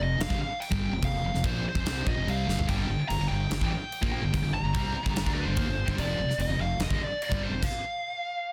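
A driving, straight 4/4 hard rock groove with a heavy feel brings in a gated 80s drum kit a moment after the start, up front with a punchy kick, medium-tuned snare and bright cymbals in a big, airy room, and it rolls through a fill at 2.5 seconds. Underneath, a round, fuzz-drenched fingered bass grounds riffs from a sludgy distorted guitar and a very quiet overdriven semi-hollow guitar, joined at 2.7 seconds by a double-tracked high-gain guitar in the background as the chords move from F5 to Gm and back. Up front, a dark lead guitar through a small cranked amp carries the melody with overdrive and slapback echo, ringing on alone after the band stops around 7.6 seconds in this dense, heavily limited fragment cut from a longer piece.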